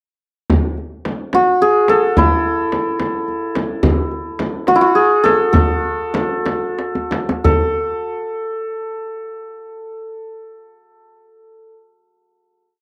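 A dry, close 1970s-style studio sound with light reverb frames this short, hypnotic and soulful Persian modal piece in 6/8, where a shimmering, up-front santur plays an ornamented modal melody over a band-limited, soft-handed tombak and a deep, distant frame drum that both begin at 0.5 seconds, slow down, and close with a drum fill before stopping at 7.8 seconds, leaving the santur to ring out on a final note until 11.7 seconds.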